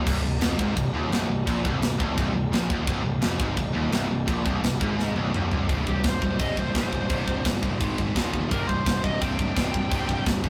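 A straight 4/4 pulse at 170 BPM drives this dark, heavy metal excerpt in C minor, cut from a longer piece and played on a tight metal drum kit with bright cymbals, a medium-tuned snare and a tight kick sitting up front, its china, crash and toms filling out an airy room. Three guitars share the low riff from the start: a fuzz guitar, double-tracked and compressed in the background, plus very quiet heavy and scooped high-gain guitars, all riding over a growly, overdriven fuzz bass. Through the opening 5.7 seconds a rich chamber string section holds very quiet bowed chords with vibrato over a C minor harmony, until a drum fill leads into the second half. At 5.9 seconds a high-gain lead guitar with a warm, distorted tone takes a solo, spanning G4 to G5 over power chords moving through C5, Ab5 and Eb5. The whole thing has the rough feel of a rehearsal-room take, with light reverb and saturation lending grit.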